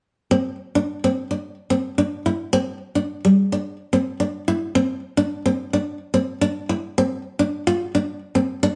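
In a lightly swung 4/4 groove, this danceable, joyful highlife fragment features a lone fingerpicked nylon-string guitar, acoustic and classical in tone and placed up front in a moderate studio reverb, playing from 0.3 seconds to 8.8 seconds in its middle register, with a new section starting at 4.8 seconds.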